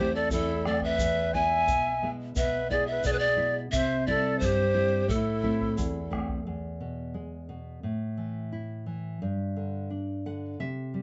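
This short portion of a longer Andean folk piece sits in a damp studio room with a soft, dulled top end. The mood is wistful and melancholic, set in a straight two-beat metre at an unhurried pace. A polished pan flute carries the melody up front, its airy, woody tone marked by vibrato, tongued notes and a touch of chiff, while a breathy large quena adds a second line, end-blown, softly attacked and mellow, with rolled-off highs. Underneath, a full-bodied nylon-string guitar fingerpicks a deep classical accompaniment close to the ear, with a distant, dark bombo booming from a large room and a grainy, bright tube shaker sitting close. Both winds fall away at 6.1 seconds, just before the piece moves into a second section, and the warm guitar goes on through to the end, rounding things off with a fill from 9.9 seconds.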